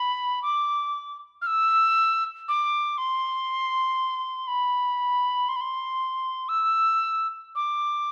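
Mournful and longing, this brief celtic folk excerpt unfolds in a slow, rubato 3/4 at around 55-61 BPM. A mellow wooden whistle plays alone and up front from 0.0 to 8.1 seconds, its airy, straight tone carrying a soft attack, rolled-off highs and an expressive line set high in its register. A moderate recital hall reverb, with a 1.5 second decay, gives the solo a gentle sense of space.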